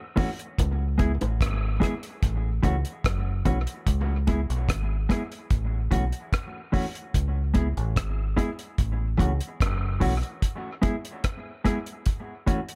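Dub reggae at 73 BPM in C# minor, heavy and deep in mood, with a tight-kicked, dry acoustic drum kit of hi-hat, kick and rim click up front, a round, dark fingered electric bass that drops out at 10.2 s, a clean, compressed electric guitar accompanying through dub echo over a cycle of A6, C#m7 and G#m, and low-tuned bongos that sit very quietly close by before stopping at 3.7 s, all in a small room with light reverb in this excerpt cut from a longer piece.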